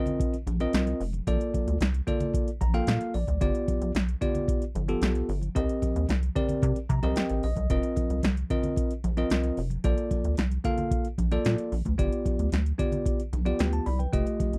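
A rubbery, hollow square bass with a resonant filter pluck drives this danceable, feel-good early-eighties boogie funk at 112 BPM in Bb major, alongside punchy, overdriven analog drum-machine hits with a deep kick and metallic hats, bell-like tine electric piano chords that slip in short fills at 2.3 and 6.6 seconds, and thick-skinned congas in the background of a dry, close studio sound.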